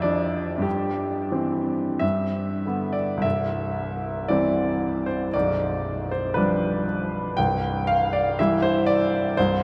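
A clear, natural-sounding baby grand piano opens alone, up front, on a Dm/F chord and plays a lyrical, warm romantic character piece in a flexible, rubato 2/4 that spans from the deep bass up into the treble. Its long sustain blooms into a huge ambient reverb, placing the instrument in a vast, echoing space. At 3.2 seconds the harmony settles onto C and moves through G7/B back to C by 7.4 seconds, in this brief passage cut from a longer piece.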